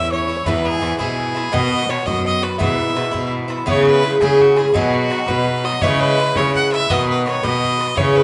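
A rollicking, bright Celtic jig in 6/8 at 112 BPM opens with a biting, close fiddle carrying the melody over up-front, metallic bouzouki with its doubled strings, a nasal bowed cello on the bass, and an airy, chiffy tin whistle tucked behind as a second line, while a tight, damped bodhran sits distant in the background. A plunky, very quiet fingerpicked banjo adds its own second line until 3.3 s, returning only at 8.0 s, as the tune moves from E major into C# minor at 3.7 s over chords shifting between C#m7 and B. The short cut has the rough feel of a home demo, with light small-room reverb and a dull top end.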